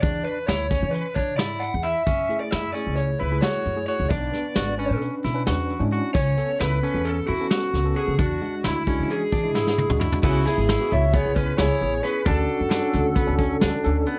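The sound is worn and lo-fi, like an old cassette tape whose pitch drifts and warbles, set in a moderate studio reverb. This brooding, driving progressive instrumental, cut from a longer piece, moves in 9/8 at 265 BPM counted in eighths with a straight feel. An up-front brush kit with muffled, dark cymbals, a tight kick and a medium-tuned snare sits beside a woody, thumpy pizzicato upright bass on gut strings, while a bright, clean picked electric guitar plays arpeggios and a lead guitar through a small cranked amp carries the overdriven, picked melody. A gritty tine electric piano played through a combo amp adds accompaniment from 2.3 seconds, its fast tremolo shimmering under the chords. After a drum fill at 9.6 seconds the harmony shifts toward C#m7 and Bm7/D, and a breathy, whispered flugelhorn with light vibrato and a soft attack enters at 10.3 seconds with an intimate, jazz-style second line trailed by delay.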